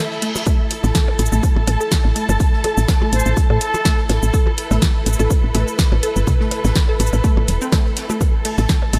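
A reverse cymbal and a dark, lush bowed string section with vibrato and sidechain pumping open this quirky, hypnotic excerpt of minimal techno at 124 BPM with a light 16th-note swing, over an A5 chord. Soon they are joined by a punchy, up-front electronic kick; a round, woody FM bass that also pumps; a booming analog drum machine with crisp snare, metallic hats, ride and shaker; tape-echoed electronic percussion blips and toms in the background; and a distant, very quiet acoustic kit of hi-hat and snare. A squelchy, resonant blip pluck riff colored by chorus, cassette tape and tape echo bounces on top, while an airy silver concert flute with tape echo appears briefly between 3.1 and 4.0 seconds, all in a small room with light reverb.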